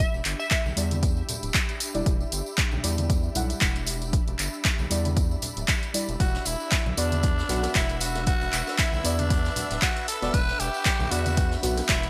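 A glassy, crystalline wavetable pluck sounds briefly over deep, mellow chord stabs, a round analog bass pumping with the sidechain and a jingly tambourine, as an ethereal, airy pad, an overdriven analog drum machine with handclaps and hi-hat, a punchy up-front electronic kick and soft-handed congas and bongos settle into a deep, warm deep house groove in E minor at 116 BPM with a swung 16th-note feel. At 6.2 seconds the harmony moves from Em7 to Bm, and a raspy, growling tenor saxophone solo with delay arrives, joined by shimmering vintage string-machine violins in the background and a very quiet acoustic drum kit. The bright 1980s-style digital production wraps this cut from a longer piece in light reverb.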